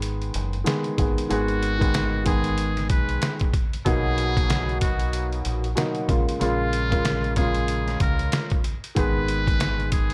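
A dark, woody upright piano with audible action noise opens this reflective, tough boom-bap hip-hop excerpt at 94 BPM in G# dorian, over a round, deep dub bass and a gritty, pitched-down sampler-style kit with a thumpy kick and medium-tuned snare, swung on the 16ths. At 1.3 seconds a buzzy, breathy trumpet with a metal mute takes the jazz-style solo melody, with light vibrato and a touch of analog delay, as the chords move from G#m through Bmaj7 and A#m7 back to G#m. The piano and drums sit up front in a dry, gritty hardware recording with light reverb.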